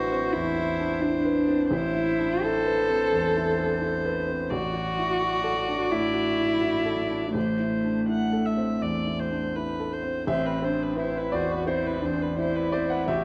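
A moderate concert hall reverb surrounds this short fragment of neoclassical chamber music for piano and strings. The mood is melancholic and fragile, and the pulse feels uneven, pushed and pulled by rubato. A dark, woody cello sits up front and close, carrying a second line with vibrato and a bowed sul tasto tone from a single player. Beside it, a clear, intimate grand piano supplies accompaniment across a broad register, its action noise audible, while one viola adds a rich, pure, floating layer with a soft attack, also bowed sul tasto. The harmony moves from Amadd9 to D/A at 4.5 seconds and settles on Am at 7.4 seconds, and a new section begins at 10.3 seconds before the fragment ends.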